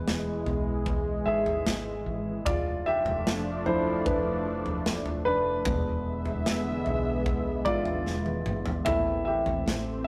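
A rough rehearsal-room recording set in a moderate stone-room reverb, this brief cut from a longer heartbroken, emotional pop ballad moves at a slow 75 BPM in a straight 4/4, passing through E, Dm/F, E7 and Am. A present, deep-bassed concert grand piano with short sustain takes the featured role up front, backed by a lush, thick, detuned sawtooth pad with chorus and slow attack, and a dark, round fretless electric bass. A punchy, airy studio drum kit with a medium-tuned snare plays kick, snare and toms, adding a fill from 8.1 to 8.9 seconds.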